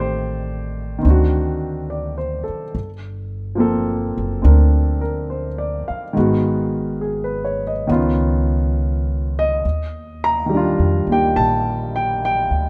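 A moderate echo-chamber reverb gives this short excerpt, cut from a longer piece, a soft, roomy halo, while both instruments sit up front in the mix. It is a late-night, tender jazz ballad at 70 BPM in 4/4, with a relaxed swing on the eighth notes and tuning set at A4 = 439 Hz. A baby grand piano provides the accompaniment with a natural, warm tone and short sustain, voicing chords between Eb3 and Bb5. Beneath it, a pizzicato upright bass on steel strings sounds woody and thumpy, holding down the low end from Gb1 to F2. Across 12.7 seconds the harmony moves from Am7b5 and D7b9 to Gm11, then slips through Abm7 and Db9 before settling on Ebmaj9.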